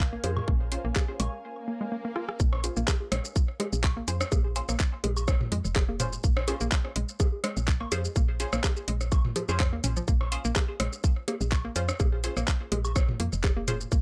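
This minimal techno excerpt has a clinical, quirky mood and a lightly swung 4/4 groove. A tight, up-front electronic kick drives it alongside a garage kit of handclaps, bright hi-hats, rim clicks and shaker, while a booming analog drum machine adds bongos, toms, rim clicks and woodblock, re-recorded in a large room and treated with delay. Underneath, a woody, round FM bass sits up front with sidechain pumping, and a hollow, bouncy square-wave pluck carries the riff through chorus, 12-bit sampler grit and dub echo. Muted, detuned dub chord stabs colour the harmony with phaser, lush chorus and delay. An ethereal, airy pad floats briefly at the opening before dropping out at 1.4 seconds, a break follows with an electronic swell, and a drum fill at 2.2 seconds leads into the drop at 2.4 seconds, where the harmony moves from Bbm7 to a Bb7 voicing that omits the third and holds. The mix is dry, with little reverb.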